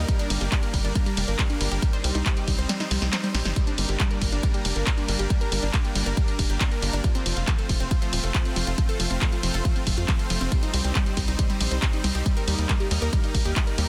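A straight 4/4 pulse at 138 BPM drives this emotional, driving uplifting trance passage in G minor, cut from a longer piece. An up-front, tape-warm layered kick drops out from 2.7 to 3.6 seconds while a dry analog drum machine of snare, handclaps, hi-hat and ride cymbal plays a fill. Beneath, a tight sawtooth sequencer bass, a lush detuned supersaw pad with slow attack and long release, and a full-bodied unison pluck playing arpeggios through digital delay all pump against the sidechain, over chords moving from Gm through Cm and F to Eb, with little reverb and a dense, heavily limited modern master.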